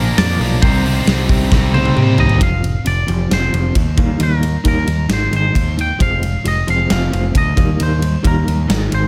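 A growling, overdriven bass sits up front beside a big, natural-sounding acoustic drum kit with bright cymbals and a tight kick, driving this angsty, brooding stretch of quiet-loud alternative rock cut from a longer piece. For the first 2.4 seconds, a bank of background guitars plays riffs: a thick fuzz part, a tight distorted part and a double-tracked overdriven part. Above them, a clean, twangy, scooped lead guitar carries the melody through tremolo and digital delay, and a drum fill at 1.5 seconds leads into a half-time passage. From there the heavier guitars drop out, and a slightly broken-up, compressed guitar through a small old amp plays arpeggios with tremolo as the chords move through F5, Eb, Ab and Fm.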